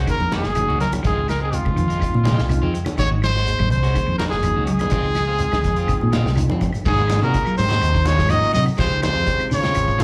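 Joyful and driving, this afrobeat excerpt moves at 124 BPM in a straight 4/4, centred on Ab mixolydian as the harmony swings between Ab7sus4 and Dbmaj7. A bright, punchy trumpet with light vibrato carries the melody up front, over a round, dark fingered electric bass and a vintage drum kit with a punchy kick, dark cymbals and a pumping small-room sound. In the background, a clean electric guitar picks arpeggios through lush chorus, while a second guitar at the edge of break-up adds stabs with tremolo and slapback echo, and a bell-like tine electric piano comps through a phaser. Low-tuned congas sit distant in a large room, joined by a grainy shekere and woody claves kept very quiet. After a tine electric piano fill and a drum fill, a raspy baritone saxophone and a plunger-muted trombone with a wah-wah colour enter together at 6.9 seconds as a second line. The whole performance sounds like a live gig heard through the venue's PA, wrapped in club reverb.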